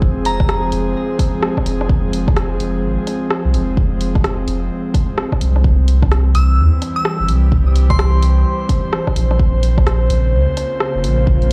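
Wistful and nocturnal, this future garage excerpt moves at a swung 4/4 pulse. A breathy, detuned pad holds sustained chords through a chorus, pumping against the sidechain. Beneath it sits a round sine sub bass, up front and pumping in the same way, with a deep, layered electronic kick driving the groove. A deep house kit adds dark hi-hats and rim clicks from 0.3 seconds. A crystalline FM bell carries the melody through chorus and tape echo, flickering briefly near the start and returning from 6.3 to 8.5 seconds. The harmony moves from Fm to C and then to Bbmadd9, all set in a large studio reverb that sounds like a big system playing in a bare room.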